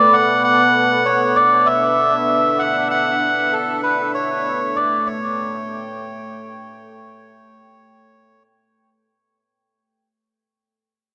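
Spacious and meditative, this short ambient fragment, cut from a longer piece, drifts at 97 BPM in 4/4 with a gentle swing on the sixteenths. A deep, moody pad holds sustained chords throughout, its detuned sawtooth and sine layers thickened by a sub octave, slow attack, long release, chorus and its own reverb into a mellow bed. Up front, a reedy, breathy melodica carries the melody with a nasal, vintage, band-limited character, and dub echo trails each phrase before it stops at 8.4 seconds. The harmony moves from Bm7 to A7 at 4.1 seconds, while a wet spring reverb and studio ambience give the echo-heavy mix its sense of space. The whole passage fades out across its 9.1 seconds.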